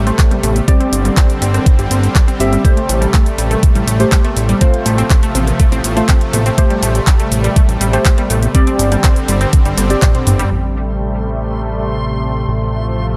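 An overdriven, knocking electronic kick sits up front in this bittersweet, emotional progressive house excerpt at 122 BPM in A minor, joined by a layered pop drum kit of cabasa, handclaps, hi-hat and toms, a fat, saturated analog bass, and a very quiet layer of bright, hard-hand cowbell, congas and woodblock, all moving over a sidechain-pumped supersaw pad cycling Am7, Gsus4 and F/A. A lush, punchy unison pluck arpeggiates in the background with dub echo, while a deep, dark chord stab with chorus and a moving notch adds mellow, decaying accents. A drum fill at 9.8 s leads into a filter sweep on the supersaw from 10.5 s, and a reversed, dreamy granular texture with built-in reverb swells high above from 11.3 s.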